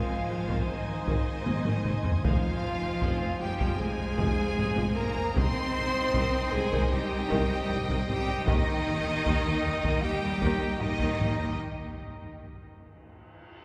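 Opening on a lush, focused violin melody with smooth background second violins, dark violas, bright flute-stop pipe organ chords and warm, soft-attack French horns, this heroic, epic cinematic film score at 77 BPM in 4/4 moves through Ab, Fm, Cm and Eb, as expressive cellos, rich double basses and a very quiet, mellow tuba hold the low end; hard-stick taiko drums enter at 0.5 seconds with a fill at 1.5 seconds, and after the ensemble breaks off at 11.6 seconds, a huge, dark reverse cymbal sounds in the cavernous cathedral reverb.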